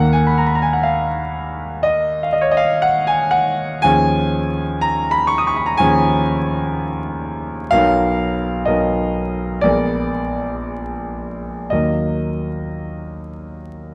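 Yearning and mournful, this fragment of a romantic classical nocturne for solo piano unfolds in E-flat minor at a slow, rubato 53-64 BPM in 4/4, tuned to A4 = 437 Hz. A warm, natural grand piano sits up front, spanning Bb1 to Eb6 and opening on a high Eb5, then moving through Db over Eb, Bmaj7 and Bb7b9 before resolving to E-flat minor at 11.7 seconds. Close, detailed miking captures the instrument within a moderate scoring-stage reverb, with vinyl crackle beneath.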